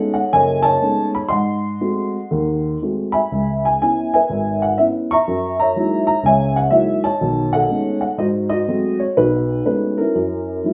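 This live recording from a single room sets the upright piano up front in a wet studio reverb with a 0.8-second decay, giving it an intimate presence. It is a brief cut from a longer solo jazz piece in B mixolydian, moving at 123 BPM in 4/4 with a swung eighth-note feel that loosens into rubato. The dark piano plays alone for the full 10.7 seconds, ranging from a deep F#1 to a high C#6, and its woody, boxy tone comes with audible action noise and long sustain. The harmony opens on B13, passes through G#7b9, C#m7 and F#13, circles back to B13, and closes on F#13. Tuned slightly low to A4 = 435 Hz, the playing comes across as playful and sophisticated.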